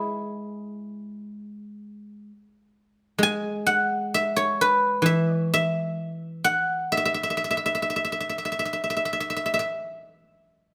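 A close, detailed recording with light reverb captures a solo guzheng, ringing and silvery, played up front with fingerpicks in a pastoral, flowing Chinese traditional piece in E gong mode, moving freely in rubato around 56-67 BPM across a range from E3 to G#5 in this 10.7-second cut from a longer work.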